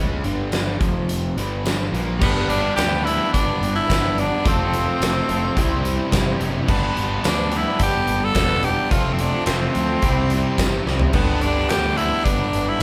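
Classic rock with a sunny, swaggering feel, this excerpt opens on an overdriven, double-tracked stack guitar riff over fuzzy picked bass and a very quiet, full-bodied steel-string acoustic guitar, with a huge arena drum kit arriving at 0.2 seconds, its fat snare and punchy kick up front alongside crash, hi-hat, tambourine and toms. At 2.2 seconds a raspy, gritty tenor saxophone takes the solo melody up front with vibrato and scooped notes, while a second bright, cranked guitar riff joins in the background as the chords move through G, F and C. A drum fill lands at 10.9 seconds, followed by a barely audible burst of crisp group handclaps, all in a live room with light reverb.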